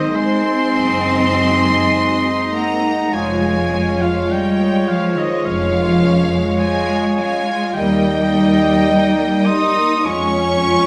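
Classical orchestral music, lyrical and warm, unfolds at a slow, rubato pace over about 10.9 seconds cut from a longer piece, its chords moving from Ab through Db/F to Eb. A distant, lush violin section carries the melody in the background while a close-miked solo oboe with vibrato, a clear second violin section and a hollow, pure-toned flute trace a higher second line above bowed violas, clear French horn chords and soft, dark trumpet stabs. Focused cellos hold the bass from the start, joined at 0.8 seconds by an expressive double bass section, all set in the reverberant glow of a recital hall.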